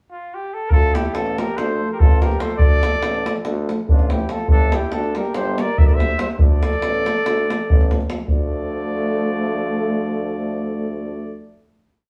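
Fiery and restless, this short, complete Balkan brass band piece moves in a driving 9/8. A cornet with a straight mute opens alone with a pickup, its nasal, soft-edged tone carrying a motif-based melody in balanced phrases. From 0.7 seconds a warm flugelhorn shadows the tune in thirds and a clear, vintage-toned tuba marks root and fifth on the main beats. Just after, two euphoniums, one mellow and one distant and roomy, each with vibrato, fill in offbeat chords beneath. A tight davul sits up front with a two-stick pattern, driving the ensemble through a move from D minor to G minor and back before dropping out at 8.5 seconds. The brass then holds a final chord, all heard as a band playing live in a small room with a wet studio reverb.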